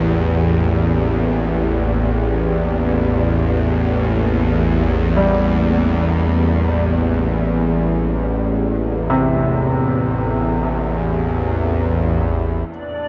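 This dark, ominous ambient drone opens at once on a tense, string-like bowed drone, sawtooth-edged and bright with a touch of vibrato, sitting up front low in the register under its own reverb. Behind it, a deep, moody pad holds sustained chords over a Gm/A harmony, its warbling chorus giving it a hazy, vintage tone, and it fades out across the first 12.7 seconds. A worn concert grand piano plays low arpeggios in the background, its short notes stretched by diffuse ambient delay and the same shimmer reverb that bathes the pad. Only at 12.8 seconds does an icy, crystalline glass pad appear, airy and chorused, just before the cut at 13.1 seconds. Free in time and tuned to A4 = 441 Hz, the music sits in a huge, wet reverb with a muted top end.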